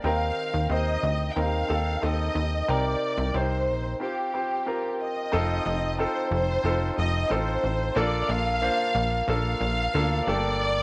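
A clear concert grand piano and a punchy, funky analog bass open this hopeful, uplifting pop fragment in straight 4/4, joined almost at once by a lush, bowed violin section carrying the vibrato-laden melody up front, while moderate spring reverb adds studio ambience and a break at 4.0 seconds leads into a second section moving from F7 through Bbmaj7 to Gmadd9.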